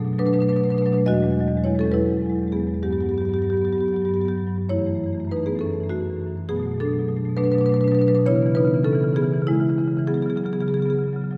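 A long church reverb, about 2.7 seconds, surrounds a single marimba that still sits up front, its woody rosewood tone clear against the ringing space. This is a short passage, about 11.4 seconds, from a longer contemporary classical work for solo marimba, and its mood is flowing and reflective. Played with medium mallets, the instrument spans from a deep E2 up to D#5, filling the hall alone throughout. The music moves in 6/8 with uneven beats and free rubato, so the pulse breathes rather than marches. The harmony drifts through seventh and added-sixth colours, Bm7, E69, Gmaj7 and F#m7, then returns to Bm7 before moving to C#m7 and coming to rest on an open C#7sus4 at 10.1 seconds.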